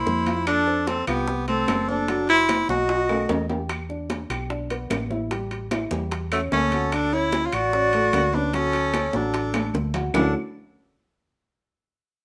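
Afro-Cuban jazz at a sunny, lively 149 BPM in D major, where a warm, vibrato-laden tenor saxophone carries the melody up front, joined by a second line on a distant, airy silver flute with a crisp chiff in phrases from 0.0 to 3.5 and 6.3 to 10.3 seconds, over a dark, boxy upright piano, a round hollow-body electric bass, ringing metal-shell timbales, high-tuned congas and tight bongos struck with hard hands, and woody claves set back in a large room, with drum fills around 2.9 and 9.5 seconds, chords moving from F69 through B7 and Em7 to Dmaj7 before a closing Dmaj9, and moderate studio reverb.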